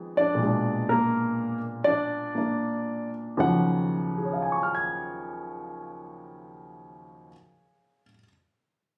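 A warm, natural baby grand piano with short sustain sits up front in this cool, moody solo jazz fragment cut from a longer piece, swinging in 4/4 as it slows down over the opening 3.4 seconds on a Bb7b9 before settling onto an Ebm9, all captured on a phone in the room with light reverb and studio ambience.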